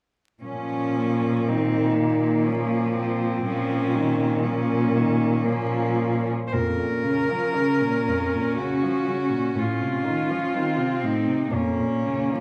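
A reverberant recital-hall sound with a faint vinyl crackle frames this yearning, melancholic classical passage for a cello ensemble of four players, heard as a fragment of a longer piece. In triple metre with uneven, rubato beats, three bowed cellos enter together at 0.4 s, and the rich melody cello joins at 0.5 s. The melody cello sits up front, intense, with light vibrato and a slightly distant quality. A second cello carries a focused, close inner line, while another plays a smooth, even accompaniment, and a dark, woody cello anchors the bass. The opening phrase rests on a B-flat minor chord, and at 6.5 s a new section begins that passes through Bbm/F and F7/A before settling back on Bbm/F as the fragment closes at 12.4 s.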